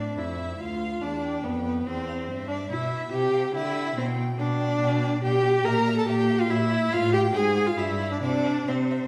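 This is a quick classical-period movement for string quartet in C major, moving at 142 BPM in 3/4 with a rubato feel, restless and dramatic in mood, and cut from a longer piece. The viola and cello sit up front: the viola plays a focused, clear accompaniment with vibrato, while the cello supplies a rich, smooth bass line from D2 to D3. The first violin carries the melody between E5 and A5, yet it is placed in the background, a clear, even, bowed voice with vibrato, while the second violin adds a smooth second line from B4 to Bb5. All four players sound from 0.0 s to about 9.1 s, with the harmony moving through C/E, G/B and Gm6/Bb before a brief chordless moment at 7.3 s and a close on C at 8.2 s. The quartet is heard from further back in a recital hall whose lingering reverb gives the sound a spacious, resonant glow, and the tuning sits slightly below standard at A4 = 437 Hz.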